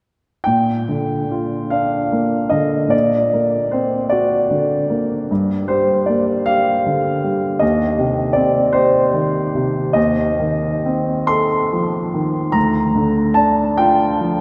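The rhythm sways gently in 6/8, with the dotted-quarter pulse drifting between 42 and 54 BPM under a free, rubato feel. This is a romantic classical nocturne for solo piano in Bb major, dreamy and tender in mood. A warm concert grand carries the whole passage from 0.4 to 14.4 s, ranging from D2 up to C6 with a deep bass and an open, up-front tone. The harmony moves from Bb through D7/Bb, Gm, Cm/Eb and F7/Eb before settling on Bb/D at 12.6 s. A wet cathedral reverb with a 4.6 s decay surrounds the instrument, and the tuning sits slightly low at A4 = 438 Hz. The recording is an excerpt cut from a longer piece.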